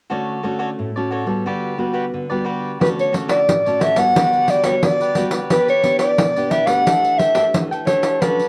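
Samba and choro at 89 BPM in D major, joyful and playful, this short cut opens with crisp picked cavaquinho and full-bodied, fingerpicked nylon-string guitar with audible finger squeak moving through Dmaj7 and Gmaj7/D, until at 2.8 seconds a breathy, whispered soprano saxophone takes an intimate, up-front jazz-style melody with vibrato and scooped notes over jingly, hard-handed pandeiro, the strings and sax carrying a cassette-tape hue in a small room with wet spring reverb.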